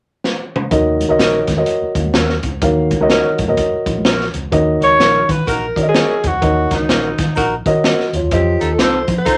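Driving and urgent, this short cut of uptempo 1960s-style soul swings in 4/4, opening with a crunchy breakbeat drum fill before a dark, woody upright piano, a round, punchy muted electric bass, bright high-tuned congas in the background and dark, slightly broken-up guitar stabs from a small old amp settle over an Ebm7 groove. The saturated drums, with their tight kick and rolled-off top, sit up front alongside the boxy piano, while the congas drop out around 4.4 seconds. At 4.8 seconds a warm, roomy alto saxophone takes the melody with vibrato, backed by a clear, close-miked saxophone section, as the harmony shifts to F7 near the end in a moderate club ambience.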